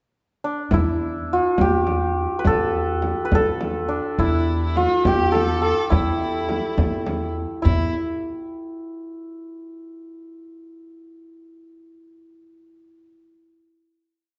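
A hypnotic, soulful Persian modal ensemble piece in 6/8 at 69 BPM, set in E dastgah shur, with a bright, shimmering hammered santur carrying the ornamented modal melody up front from 0.4 seconds. A woody pizzicato upright bass plays a simple root and fifth line on E2 while a deep frame drum sounds a low and high stroke pattern, and a clear, biting solo violin with light vibrato joins at 4.2 seconds to bow the same line with its own ornaments. The short piece closes on a final note from 7.6 seconds, set in a moderate recital hall reverb with a soft, rounded top end.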